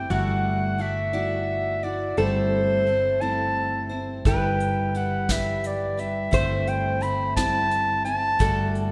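A mellow clarinet leads this hopeful folk passage, carrying the melody up front with a soft attack and a classical touch. A full-bodied, picked steel-string acoustic guitar and a metallic, nasal lap resonator guitar sound alongside it from the start; the resonator, played with fingerpicks and slide, adds a second line beneath the clarinet. A dark, round fretless electric bass holds a low G under the harmony, which moves gently between Dadd9/G, Am7/G and Em/G. At 4.3 seconds a soft brush drum kit joins with an airy, polished sound, a tight kick and a medium-tuned snare. The pace is unhurried at 58 beats per minute in a flowing 6/8. A moderate church reverb gives the parts a spacious, resonant glow in this warm excerpt from a longer piece.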